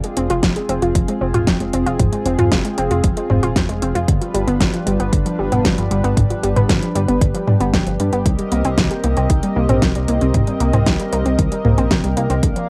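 A shimmering, chorused pulse-width pad pumps on sustained chords as a warbling, dusty lo-fi pluck spins arpeggios through tape echo, alongside a glossy, mellow chorused synth bass with tube saturation and an overdriven pop drum kit with a fat snare and metallic hats up front, with a punchy electronic kick entering at 0.4 seconds, giving this moody, cinematic synthwave excerpt a home-cassette grain as it moves from Fm through G7 to Cm7.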